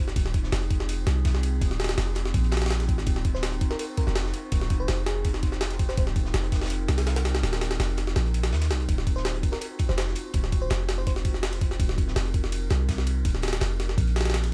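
A gritty, pitched-up jungle sampler-style drum kit sits up front in this raw, atmospheric drum and bass excerpt, its thumpy kick, high-tuned snare and ride cymbal compressed and set in a small room. Beneath it, a very quiet acoustic breakbeat kit adds a dark, rolled-off layer of saturated hi-hat and snare. A deep, boomy 808-style bass, also up front, holds down the low end with mellow, decaying sine tones colored by tube saturation. A warbling, lo-fi pad sustains a nostalgic Ebm69 chord throughout, its detuned, wave-folded tone softened by chorus and reverb. A bell-like FM electric piano sparkles in the background in two short phrases starting at 3.3 and 9.2 seconds, trailing off through chorus and dub echo.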